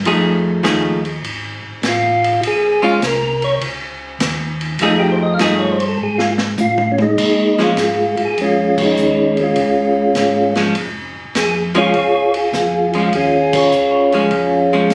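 Bluesy and soulful, this soul jazz organ trio excerpt swings along on a round, key-clicking tonewheel organ bass line turning through a slow rotary speaker, alongside a dark, clean archtop guitar comping up front and a gritty, punchy vintage drum kit with dim cymbals and a rolled-off top. At 1.9 seconds a percussive tonewheel organ carrying third-harmonic percussion takes the melody up front, its mellow tone also spinning through a slow rotary speaker. A drum fill at 6.0 seconds leads into the second section, where the band hits two accents, all in a light reverb with a roomy phone-recorded feel.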